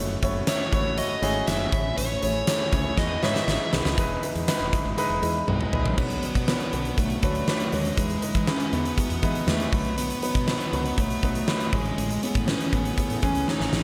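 A steady, straight 4/4 pulse at 120 BPM drives this nostalgic, romantic slice of 1980s-style pop in E major, cut from a longer piece. A huge arena drum kit with a fat snare, punchy kick, bright cymbals, hi-hat, tambourine, crash and toms sits up front, entering at 0.2 seconds and rolling through fills at 3.0, 5.5 and 13.5 seconds. Underneath, a woody fretless electric bass with a growly, round, hollow-body tone anchors the low end, while a grand piano with short sustain and a slapback echo supplies up-front accompaniment. From 0.5 seconds a dark, smooth lead guitar carries the melody, its picked, overdriven tone colored by delay and slapback echo. The harmony drifts through lush chords such as F#m7, Amaj7, Emaj7 and Bmadd9, all set in a big arena sound with a moderate concert hall reverb.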